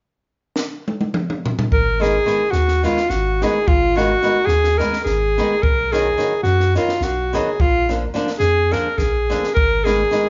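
A bright, close-miked alto saxophone with light vibrato leads a bittersweet, virtuosic classical-style solo from 1.7 seconds in this Balkan wedding-band folk excerpt at 214 BPM in 7/8 and A-flat dorian sharp four, after a dry compact cocktail drum kit with a high-tuned snare and punchy kick opens with a fill at 0.6 seconds, while a deep sine sub bass with a pitch-drop attack and a fingerpicked acoustic flamenco guitar with finger squeak play beneath, all set in a moderate large-studio reverb with a rolled-off top end.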